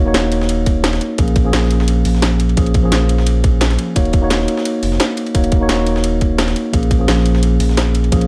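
A mellow tine electric piano with tape echo and a deep, sine-like sub bass with octave open this soulful, melancholic liquid drum and bass passage in Eb minor at 173 BPM, moving between Ebm7 and Bbm7 chords, as a gritty, compressed breakbeat sampler-style kit with filtered hats, ride and high-tuned snare and a layered garage kit with a cracking snare join at 0.1 seconds, followed by a tight electronic kick at 0.7 seconds, all set in a dark production with light reverb.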